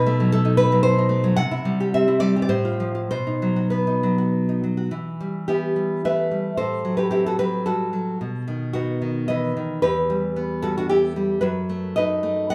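A rubato 3/4 pulse drifting between 95 and 116 BPM carries this intimate, melancholic romantic piece for solo classical guitar in E minor, cut from a longer work. The fingerpicked nylon-string guitar sits up front with a bright, fresh-stringed tone and audible finger squeaks, ranging from E2 to F#5, bathed in a wet recital hall reverb. It opens on a tense B7b9 before passing through C and F/A, then settles at 4.9 seconds into a passage that moves between Em, F#dim/A and B before closing on B7/F#.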